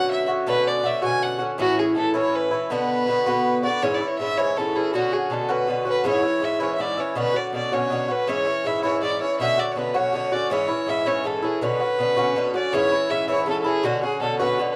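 In a straight 6/8 feel, this driving, dark and lively Celtic folk excerpt sets a single bowed fiddle with a reedy, gut-string tone and a touch of tape echo over a picked, metallic Irish bouzouki on double strings, both up front in a dry, close small-room sound with a 1970s studio character, as the harmony moves from Bmadd9 through A and Bm before circling between C#m and Bmadd9.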